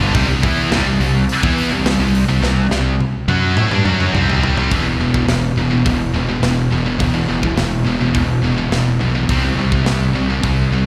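Heard as a live gig through the venue's PA, with small-room ambience and recital-hall reverb, this dark, heavy metal fragment in E minor moves at 105 BPM in a straight 4/4. Two bright, picked high-gain electric guitars play the riff through distortion and slapback echo, one heavy and the other scooped and set in the background, while a fingered electric bass with fuzz and overdrive sits up front, growly and punchy. A tight acoustic drum kit with a medium-tuned snare and gritty, saturated tone plays a fill from 2.4 to 4.7 seconds. At the fill's end the harmony shifts from C5 to E5, before returning to C5 at 9.3 seconds.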